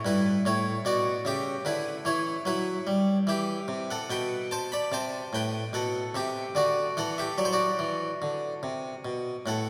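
A close, up-front harpsichord sits inside a wet church reverb with a 3.0-second decay, so its dry, plucked attack rings out into a long resonant tail. This is a short cut from a longer classical piece: a baroque-style suite movement for solo harpsichord, serene and flowing, in 4/4 at about 73 BPM with a gently rubato feel. The instrument has a bright, full Flemish-style tone on a single set of strings, and it plays alone for the whole 9.7 seconds. It spans G2 to B5. The harmony moves from Em/G to Em, then through Am7 and settles on D.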